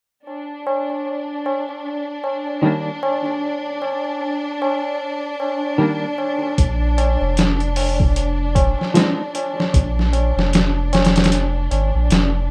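A gritty, pitched-down sampler-style drum kit with a thumpy kick arrives up front at 6.6 seconds alongside a deep, round dub sub bass, joining a low-tuned, ringing tabla and lush, vibrato-rich filtered strings holding a sustained D4 in this dark, cinematic trip hop excerpt at a swung 76 BPM, while a clean, twangy electric guitar with tremolo and tape echo plays accompaniment from 2.6 to 9.2 seconds as the harmony settles on Bb, all within digital ambience and a rough home demo mix.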